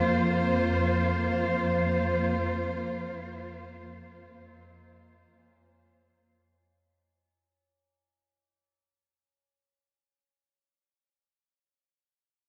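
Ambient fragment, cavernous and unsettling, in which a lush, bowed symphonic cello section sustains a Bbmadd9/F chord with smooth vibrato up front over a detuned, warbling analog drone softened by chorus, and at 4.5 seconds distant, metallic tubular bells ring out solemn arpeggios through a delay, all bathed in a dreamy hall reverb as the piece fades out.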